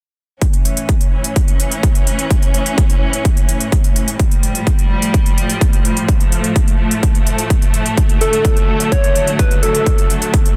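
An uplifting, anthemic excerpt of festival progressive house at 127 BPM in A major opens with a rich, bowed string section holding sustained chords that pump against a punchy, overdriven kick drum up front and crisp, overdriven electronic hi-hats, moving from A through Fadd9/A to D/A, until a round, keys-like FM synth lead with chorus and dub echo enters at 8.2 seconds to carry a gentle melody over the light digital ambience of a dense, heavily limited master.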